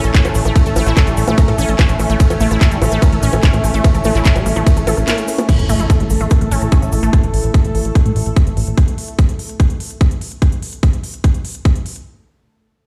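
A tight, up-front electronic kick drives this hypnotic 146 BPM psychedelic trance cut in A major alongside a dark, funky analog bass, a lush detuned unison pluck riff with delay, a bubbling resonant stepped-filter texture, a crisp-hatted drum-and-bass kit with bongos, claps and cymbals, grainy cabasa and a nostalgic, warbling tape-like pad, before a very quiet impact at 5.5 seconds opens a fade-out on the ambient pad in a stone-walled room reverb.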